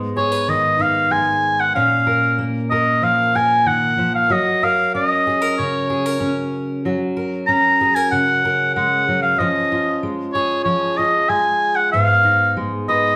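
A wet, large-studio reverb surrounds this short folk passage, recorded as a live performance in one room and cut from a longer piece. The mood is intimate and reflective, moving in a straight, even 4/4. A fingerpicked steel-string dreadnought acoustic guitar opens at 0.0 s with a full-bodied, up-front accompaniment that sits lower in the mix than the melody. A clear, present oboe enters at 0.2 s and carries the solo line in a classical style, placed up front and above the guitar. The harmony moves from G#m through A#m and F# to C#/E# before settling back on G#m near 11.9 s.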